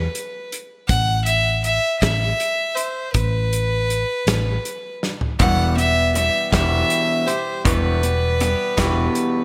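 Wistful and reflective, this short folk rock and heartland rock excerpt moves at 53 BPM in a straight 6/8 feel, set in E minor. A clear, intense fiddle carries the melody up front from the start, its bowed line smooth on top with light vibrato and trailed by digital delay. Beneath it, a dark, round hollow-body short-scale electric bass, fingered and amped, holds the low end, while a natural country drum kit with a punchy kick, medium-tuned snare, hi-hat and toms sits close in a small room, touched with gated reverb. After a drum fill at 5.0 seconds, a bright picked steel-string acoustic guitar with subtle chorus and a slightly broken-up, compressed, lo-fi electric guitar riff through a small old amp both enter at 5.4 seconds as the harmony lands on E minor. Moderate plate reverb and a bright 1980s-style digital production shape the overall sound.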